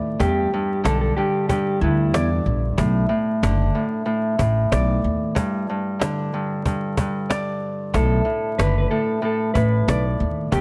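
Boom-bap hip-hop at 93 BPM in B minor with a swung 16th-note feel, reflective and dark, cut from a longer piece. A fingerpicked, ringing Celtic harp and a woody pizzicato upright bass with steel strings sit up front from the start, joined by a close, dry cajon with hard hands and faint snares. A clean, dark electric guitar carries the melody through tape echo, entering at 0.2 s, dropping out at 2.3 s and returning at 8.0 s after the break from 5.4 to 7.9 s, all over gritty hardware grain and vinyl crackle as the chords move through Em7, Bm7 and G5.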